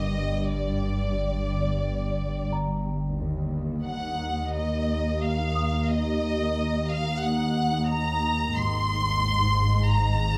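Moving in a straight 4/4 at 89 BPM, this eerie, ominous suspense film score cue is cut from a longer piece and unfolds as a single section. A bright, focused violin section carries the melody up front between D5 and C6, bowed with vibrato and a lush ensemble sheen, while a warm cello section holds the bass from Eb2 to Ab2 with expressive vibrato and portamento. Beneath them an organ-like drone, calm and sustained with a slow attack and long release, sits up front in the low register, thickened by ensemble chorus and its own reverb. A delicate, bell-like celesta adds a sweet, airy texture until 8.6 seconds, and a rich, smooth double bass section surfaces briefly in the background at 3.2 and 8.6 seconds. The harmony moves from G minor to E-flat minor and then to A-flat, captured with close, detailed microphones and light reverb.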